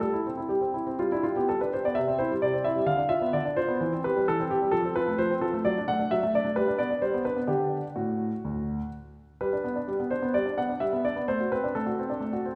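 A graceful, cheerful classical-period piano sonatina excerpt in 4/4 at 129 BPM, played with rubato on a solo concert grand whose clear, polished, up-front tone carries deep bass, long sustain and audible action noise, moving from C major to G major at 5.7 s in a wet recital-hall reverb.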